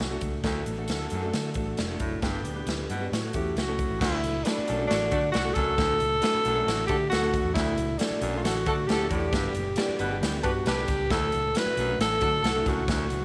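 Danceable and warm, this cut from a longer piece is 1960s-style uptempo soul in a straight 4/4. A breathy tenor saxophone with a smooth top and light vibrato carries the melody up front, taking hold in earnest at 3.4 seconds, while a tight, distant saxophone section plays a second line in the background. A vintage-toned baritone saxophone riffs low underneath, and a woody, boxy upright piano with audible action noise fills in the accompaniment. The dark, round, foam-muted electric bass holds the low end beside a swinging big-band drum kit that sits up front with a punchy kick, medium-tuned snare, hi-hat and crash cymbal. A very quiet clean electric guitar, recorded direct, adds a picked riff from 4.5 to 10.9 seconds, and a moderate plate reverb lends the mix a studio sheen.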